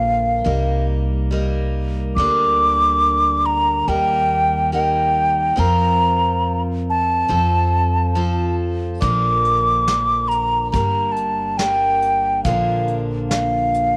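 Pastoral and hopeful, this acoustic folk fragment in Bb major moves at an unhurried 70 BPM in a straight 4/4, with an airy wooden flute carrying the melody up front, its crisp attack and vibrato over a bright, full-bodied picked steel-string guitar and a woody, thumpy pizzicato upright bass. The harmony drifts through Cm7, Gm/D, Eb and a suspended F before resolving toward Bb and Gm. At 9.0 seconds a distant, roomy brush kit joins with hi-hat, tight kick and a medium-tuned snare, all set in a light small-room reverb.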